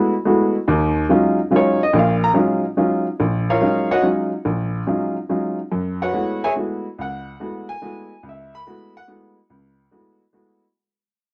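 A clear, woody upright piano plays alone, open and up front, in this spiritual, searching jazz waltz with a swung feel, moving between Gbm11 and Ebm11 chords under light reverb and the warbling pitch drift of worn old cassette tape as the cut from a longer piece fades out from 0.7 to 10.8 seconds.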